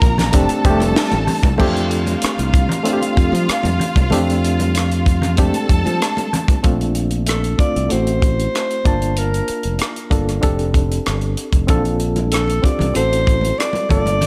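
A lush, smooth 1970s-style soul groove in F major at 95 BPM opens with a tight funk kit up front with a high-tuned snare, a punchy, bright fingered bass, a barky reed electric piano with fast tremolo, ringing congas in the background, and a clear, distant bowed string section carrying a second line with vibrato. The strings and congas drop out at 6.6 seconds as the harmony moves through Bbmaj9, Am6, Gm7 and F69, and at 7.3 seconds an alto saxophone takes the melody with a soft-attacked, jazzy subtone and tape echo. The congas return at 11.7 seconds under the saxophone, set in a small room reverb.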